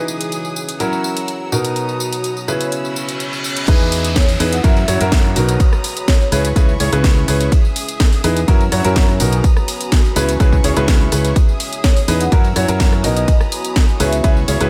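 Soulful, bittersweet piano house at 125 BPM in C# dorian, where a clear, boxy grand piano riff with dub echo and sidechain pumping leads over background violin chords, a deep sawtooth pad and house drums cycling through Emaj7, F#7, Bmaj7 and C#m7, until a reverse cymbal and downlifter carry it into a drop at 3.7 seconds that brings in a punchy electronic kick, fingered electric bass and a very quiet gritty breakbeat layer, followed shortly by a mellow vibraphone melody with dub echo.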